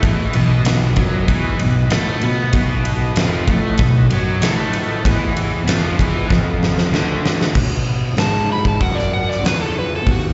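Raunchy and gritty, this blues rock and southern rock excerpt struts at 96 BPM in B mixolydian, with a double-tracked crunchy guitar riff, a growly fuzz fingered bass and a huge arena drum kit with a fat snare, punchy kick and bright cymbals driving the opening, while a thick overdriven tonewheel organ holds sustained chords in the background through chorus vibrato and a slow rotary speaker. After a drum fill from 6.3 seconds, the riff and organ stop and an overdriven slide guitar takes a solo at 8.2 seconds with slapback echo. It sounds like a live gig heard through the venue's PA, dull at the top with recital hall reverb.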